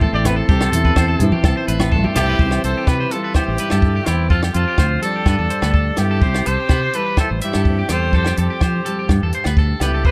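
A sunny, danceable highlife groove begins mid-flow with a fingerpicked nylon-string guitar with fresh strings, a twangy, slightly broken-up electric guitar playing arpeggios through slapback echo, an up-front fingered bass, and a dry cocktail drum kit with a tight kick on hi-hat and rim click, while a reedy combo organ holds very quiet chords until 2.4 seconds. A clear trumpet with scooped notes and light vibrato carries the melody as a solo, backed by softly played congas and vintage agogo bells in the background. From 2.2 seconds a raspy, growling tenor saxophone adds a second line beneath the trumpet, and light reverb frames the chords as they move from C through Fsus2 and Gadd9.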